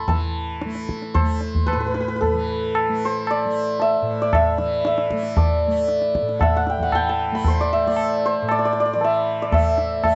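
In a straight five-beat metre that keeps speeding up, this introspective, meditative Hindustani classical fragment sets a shimmering, hammered santur melody, up front and bathed in plate reverb, over a softly plucked, buzzing tanpura drone, while a high-tuned, close and dry tabla rings out alongside, all within a dark, warm production carrying light reverb.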